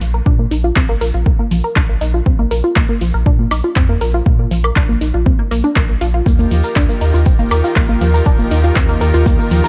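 Hopeful and expansive, this progressive house excerpt at 120 BPM in 4/4 opens on a lush, detuned sawtooth unison pluck playing arpeggios through a filter sweep and dub echo, with a round, dark analog bass and a deep house kit of metallic hats, handclaps and woodblock all pumping with sidechain, while a deep, tape-warm electronic kick sits up front from 0.3 seconds, and at 6.3 seconds a rich, bowed string section with vibrato and a grainy shekere arrive as the harmony moves from Bb5 to Ebadd9 in a dry, close mix.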